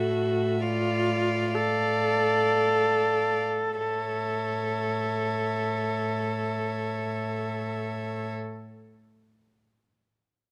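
This serene, tender passage from a slow romantic string quartet movement opens with all four players entering together, each bowing softly over the fingerboard. The first violin carries the melody high above the others, its pure tone floating and distant, while the second violin traces an airy, intimate line beneath it with light vibrato. The viola sits up front in the accompaniment as the warmest and most present voice, and the cello sustains a single low bass note with a rich, pure, floating sound. The music slows through its first 3.8 seconds as the harmony moves from an open A chord to D minor over the A bass, then settles back onto A; the quartet stops at 8.3 seconds. Close, detailed microphones and a light reverb let each soft attack come through clearly.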